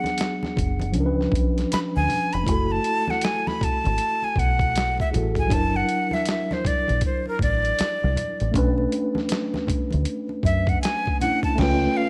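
R&B and neo-soul at 79 BPM in F# minor with a swung sixteenth feel, this introspective, late-night excerpt features a breathy, bright jazz flute soloing up front with vibrato and a crisp chiff over mellow tine electric piano chords moving from G#m7b5 through F#m9 and Bm9, a gritty, pitched-down boom bap sampler-style drum kit with a thumpy kick and tape-warm compression, a round, punchy dub bass entering at 0.6 seconds, and ringing, low-tuned congas in the background, all in light reverb before a band accent on C#aug7 at 11.6 seconds.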